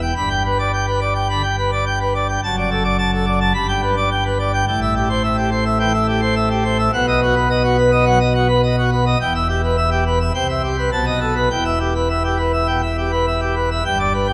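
A steady 4/4 pulse at 106 BPM drives this majestic, dramatic classical organ toccata in E minor, cut from a longer piece and tuned to A4 = 439 Hz. A solo pipe organ on full plenum with mixtures, brilliant and romantically voiced, sits up front and spans E1 to B5 across the 14.3 seconds, moving from G through D/F#, Am7 and B before settling on Em and closing with a Cmaj7–B7–Em cadence at 11.5 seconds. A wet church reverb with a 2.4-second decay surrounds the instrument.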